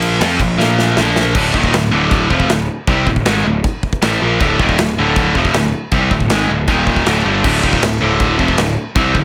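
A bright, double-tracked high-gain guitar riff sits up front in this relentless, dark heavy metal clip, backed by a growly fuzz bass and a punchy acoustic rock kit of kick, medium-tuned snare, crash and china cymbals, with a drum fill from 0.6 to 1.4 seconds leading into a long Dm-centred passage, all in a dry sound.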